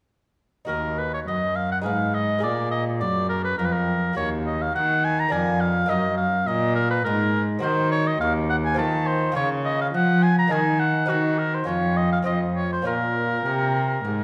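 A recital hall's reverb gives this short cut from a longer baroque-style sonata movement a generous, wet halo. The mood is grave yet flowing, moving at 103 BPM in a straight 3/4, tuned to A4 = 444 Hz. It opens in E-flat minor and turns toward B-flat minor at 7.6 s. A fingerpicked lute enters first at 0.6 s and sits quieter in the mix, its gut and double strings, some doubled at the octave, lending a delicate acoustic shimmer to the continuo. From 0.7 s a solo oboe carries the melody up front with a warm, lightly vibrato classical tone. A single bowed cello, equally prominent, grounds the bass with a rich, nasal, almost reedy gut-string voice in period style.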